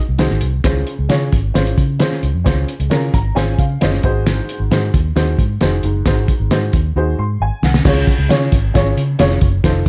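A cloth-damped, thuddy drum kit with a fat snare and gritty saturation drives this joyful, uplifting excerpt of uptempo 1960s-style soul alongside a round, foam-muted fingered electric bass and a woody, slightly detuned upright piano with audible action noise that plays a fill at 2.9 seconds, before a drum fill at 7.0 seconds leads into a short new section at 7.9 seconds, with little reverb.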